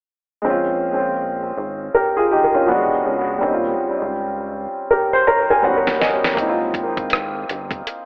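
An up-front baby grand piano with tape echo carries this sultry, introspective neo-soul R&B excerpt in Bb dorian at 81 BPM with swung 16ths, moving through jazzy chords from Bbm7 to Ab69 and adding a fill at 4.9 s over a rubbery, hollow square bass, before a gritty, sampler-style drum kit with a thumpy kick and fat snare enters at 5.9 s, all heard through spring reverb in an echo-heavy, telephone-like mix.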